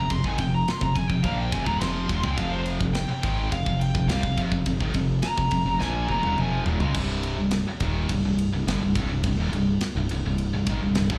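An aggressive, dark heavy metal passage in C phrygian at 105 BPM opens with a dark, distorted lead guitar solo moving between C5 and C6 with slapback and tape echo over two bright, high-gain rhythm guitars riffing in the background, a very quiet double-tracked distorted guitar that drops out at 6.9 s, a growling, round, punchy overdriven bass up front, and a tight metal drum kit with a medium-tuned snare whose fill from 5.8 s leads into a Cm section at 7.0 s, all heard through a club PA with small-room reverb.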